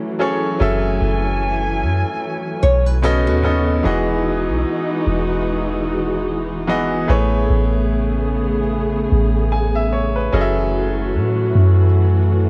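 A slow 4/4 pulse at 74 BPM with a 16th-note swing sets a late-night, sensual R&B mood in F# dorian, in this passage cut from a longer piece. A clear, intimate baby grand piano carries the accompaniment from the start, its action noise audible and its long sustain up front, while a dark, lush studio string section holds bowed chords with vibrato, a woody character and a smooth top. A soft 808-style bass enters at 0.6 seconds, deep and round with a fast attack that decays. Between 2.6 and 3.8 seconds a small, bright nylon-string guitar adds fingerpicked arpeggios with audible finger squeak, touched by analog delay. The harmony moves from F#m9 through B9, Emaj9 and Amaj9 before returning to F#m9. Cassette tape colours the piano, strings and guitar, and the whole take sits in the ambience of a small room as a home recording on cassette.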